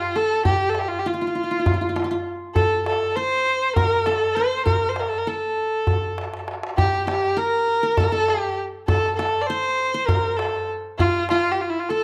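This Turkish makam ensemble piece moves at 199 BPM counted in eighths, in a straight 7/8 with tuning set to A4 = 439 Hz, and its mood is hypnotic and melancholic. A single bowed kamancheh carries the melody from E4 to D5, sitting up front with a rich, focused tone shaped by vibrato and portamento. Beneath it, a qanun played with fingerpicks supplies a second line between F4 and C5, its triple strings giving a bright-edged, warm acoustic sound. The darbuka enters at 0.2 seconds, a clay-shelled drum with a natural skin head that sounds large and deep in a big room, and it plays a fill from 6.2 to 6.8 seconds. The recording uses close, detailed microphones with light reverb, and this short passage is taken from a longer piece.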